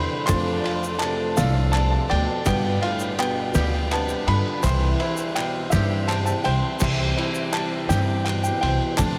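Nostalgic and uplifting, this indie folk passage in 6/8 at 55 BPM in C major sets an intimate upright piano melody with delay and audible action noise over a mellow French horn second line with light vibrato, a clear, very quiet concert grand, a shimmering octave-doubled twelve-string acoustic guitar, a flute-like tonewheel organ turning through a slow rotary speaker, twangy fingerpicked banjo arpeggios with delay, and an up-front woody pizzicato upright bass, while hollow group handclaps enter at 0.1 s and a lo-fi, cloth-damped thuddy drum kit and a grainy egg shaker join at 0.3 s, all within a dreamy mix soaked in huge ambient reverb.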